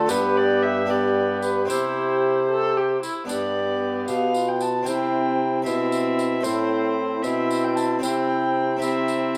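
Classical Renaissance-style consort dance in 6/8, festive and stately, where a dark, nasal gut-string violin carries the melody over an airy, chiffing tenor recorder second line, a rich, distant viola and a very quiet, brilliant harpsichord supply the accompaniment, an up-front bassoon with light vibrato holds the bass, and a jingly tambourine joins at 0.1 seconds, the consort ringing in a moderate stone-room reverb.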